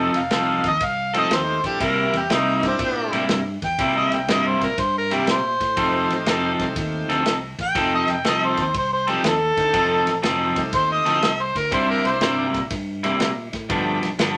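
A wet studio reverb wraps this gritty, rollicking electric blues shuffle, which swings along at 121 BPM in 4/4 and is cut from a longer piece. Out front, an overdriven harmonica takes the solo in a jazz-inflected style, close-miked with vibrato and scooped notes, entering at 0.2 seconds and stopping at 12.3 seconds. Alongside it, a twangy, picked electric guitar at the edge of break-up plays a prominent riff, while a bright tonewheel organ shouts its accompaniment from the background with key click, light overdrive and a slow rotary speaker. A round, fingered electric bass sits low in the mix, and a soul drum kit with a tight kick, medium-tuned snare, ride cymbal and a rolled-off top sounds distant in its booth. The harmony moves between F7 and C7 before turning to G7 at 13.7 seconds.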